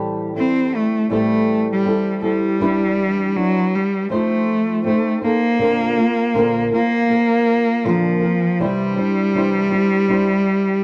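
At 80 BPM in 4/4, the sixteenth notes carry a gentle swing. This short, heartfelt and sunny pop excerpt opens on a double-tracked flamenco guitar, acoustic and dark in tone, its thumb-plucked accompaniment sitting up front as it moves through Am7, Em7 and F7. A warm, bowed cello enters at 0.4 s with the melody, a single player whose smooth, even line carries vibrato and a smooth top, also placed up front and slightly louder than the guitar. At 5.6 s the harmony moves to Bbadd9 and then Cadd9, and the passage runs to 10.8 s. The sound is dry and close in a 1970s studio manner, touched by light studio reverb.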